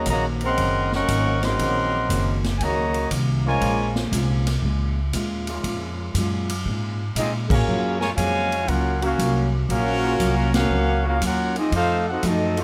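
Sultry and swinging, this short big band passage in Bb minor moves at 118 BPM in 4/4 with a relaxed swung eighth-note feel. A warm, close-miked trumpet section carries the melody up front with light vibrato, while a mellow, tight trombone section shadows it on a second line with a soft attack; both horn lines play at the start, pause at 3.9 seconds, and return at 7.2 seconds. Underneath, a woody, growly pizzicato upright bass holds the low end throughout, joined by a bright, full-bodied picked steel-string acoustic guitar whose finger squeaks can be heard in the accompaniment. A swinging big-band drum kit with a punchy kick, medium-tuned snare, hi-hat, ride and crash sounds natural in a big room, and the band hits accents at 7.4 and 10.5 seconds. From 1.4 seconds a clear, smooth-topped second trombone section sustains chords in the background, as the harmony moves from Ebm7 to Bbm7 and lands on F7b9 near the close of this fragment cut from a longer piece, all set in light reverb.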